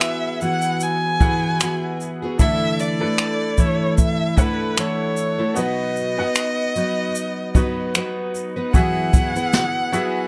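An expressive bowed violin carries the melody with vibrato, portamento and plate reverb over a shimmering, octave-doubled fingerpicked twelve-string guitar, a woody upright piano with audible action noise, and a brushed drum kit of finger snaps, shaker, snare and boomy kick, giving this easy-going, sunny acoustic pop excerpt a light swing before the harmony comes back to its opening Eadd9 at 8.7 seconds.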